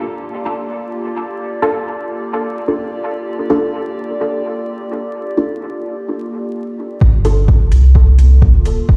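A muted, filtered dub chord stab with phaser and dub echo pulses through this nocturnal, hypnotic dub techno excerpt in G minor at 128 BPM, riding over a warbling, lo-fi pad holding a Gm9 chord with chorus and phaser, both pumping with sidechain, until a punchy electronic kick and a round sub bass arrive at 7.0 seconds, joined by overdriven metallic hi-hats at 7.2 seconds, all set in a large, reverberant room dusted with vinyl crackle.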